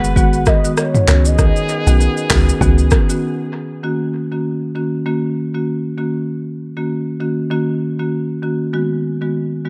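Smooth and sultry, this afrobeats excerpt moves at 98 BPM in Eb minor with a swung sixteenth-note feel. A velvety, detuned synth lead with portamento carries the melody over a clear, loose horn section with vibrato, an up-front rosewood marimba, a punchy, woody log drum bass and a layered deep house kit with an overdriven deep kick. The lead is coloured by chorus and analog delay, and the horns and drums share that delay, all within an echo-heavy mix in light reverb. The drums give way to a short break at 3.2 s, and from 3.8 s the marimba plays on alone over Ebm7, shifting to Abm7 at 8.7 s before the cut.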